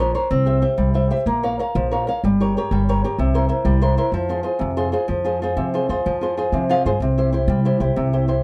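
Fingerpicked flamenco guitar sits up front in this wistful, romantic Italian serenade, its acoustic tone carrying audible finger squeaks as it moves through the F harmonic minor changes in a rubato 6/8 at 125 BPM, tuned to A4 = 445 Hz. A woody, thumpy pizzicato upright bass on gut strings supports it from beneath, and a brief guitar fill arrives at 6.5 s before the harmony returns to C at 7.0 s. The production is dark and warm with moderate studio reverb, and the 8.4-second excerpt is cut from a longer piece.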